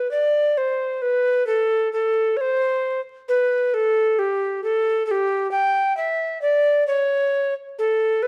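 Rubato and unhurried at 67 BPM in 4/4, this serene, flowing baroque-style fantasia in A minor, an 8.3-second fragment of a longer piece, features a solo tenor recorder playing up front between G4 and G5 with an airy, woody straight tone and tongued notes with a clear chiff, set in a moderate stone-room reverb within a dark production dusted with vinyl crackle.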